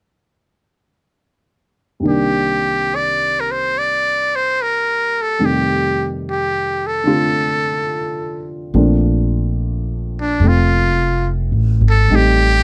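A dark, mellow baby grand piano opens this romantic, late-night jazz ballad at 71 BPM in Bb major, joined almost at once by a buzzy, breathy metal-muted trumpet singing the melody with light vibrato and scooped notes, before a woody, growly pizzicato upright bass enters at 8.7 seconds, all captured close and detailed in light reverb in this excerpt from a longer piece.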